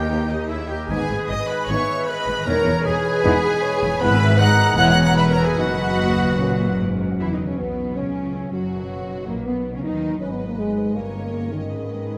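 A warm first violin section carries the melody with light vibrato and a smooth, even line, set in a restless, urgent orchestral passage cut from a longer classical work, moving at 146-165 BPM in 4/4 with a rubato feel and settling into B major from 4.0 s. Beneath it, a clear, intense second violin section sits distant in the background, while a mellow, roomy solo oboe, a dark clarinet and a pure flute section with rolled-off highs weave second lines before the woodwinds drop out around 7.0 s. A rich, close viola section fills in the accompaniment, and a fingerpicked concert harp rings out arpeggios across its range. Lush, focused cellos and distant double basses anchor the bass, with a mellow French horn section holding sustained chords from 0.1 s. The harmony moves through G#m and Emaj7 toward B, then turns through F#7/C# and back to G#m before ending on D#7/G at 11.0 s, all bathed in a wet concert hall reverb.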